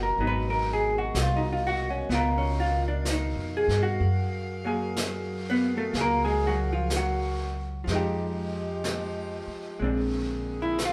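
A dark, clean hollow-body jazz guitar comps up front over woody, thumpy pizzicato upright bass and soft-attack saxophone section chords with light vibrato, joined at 0.2 seconds by a mid-forward brushed kit with a rolled-off top, in an intimate, melancholic 62 BPM swung jazz ballad that moves from Abm7 through Db13 and Gbmaj9 to Fm9 and Bb9 inside a stone room's lingering reverb.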